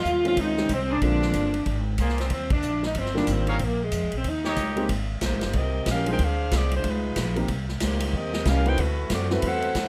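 Swinging at 186 BPM in 4/4, this brassy, joyful big band jazz passage in Eb major puts an up-front saxophone section with clear vibrato on the melody over a woody, growly pizzicato upright bass, a punchy big-room drum kit on hi-hat, kick, ride and snare, and an intimate concert grand piano with audible action noise comping through rich chords from Dbmaj9 to D13, while a vintage-toned trumpet section adds soft-attack stabs from 0.9 to 4.9 seconds, with a band accent at 2.5 seconds, all in a close, detailed sound with light reverb.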